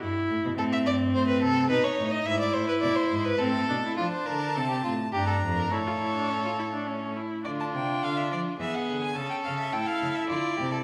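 Contemplative yet driving, this excerpt of a baroque-style fugue for string quartet moves at 105 BPM in 3/4, opening in A minor with a rich-toned viola up front over a more distant bowed cello, a second violin joining close by at 0.6 s, and a warm, focused melody violin entering at 4.0 s as the harmony turns toward D minor, all four players singing with vibrato inside a reverberant recital-hall space.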